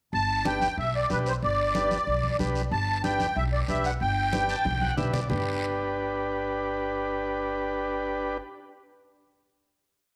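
Cumbia at a brisk 186 BPM in G major, this short, complete piece feels festive and joyful, resting on a G chord throughout. A shimmering musette accordion sits up front with hook-like melodic phrases, while a woody, thumpy upright bass plays a plucked cumbia figure low beneath it. Hard-handed congas with a thick skin tone play off-beat patterns in the background, and a raspy, close guiro scrapes long and short strokes. An overdriven vintage combo organ joins at 0.5 seconds, also up front, with light vibrato on its rhythmic triad chords. It adds a fill at 4.3 seconds, joined by a drum fill at 4.7 seconds, before the bass and organ hold a final chord from 5.3 seconds in a small, echoing room.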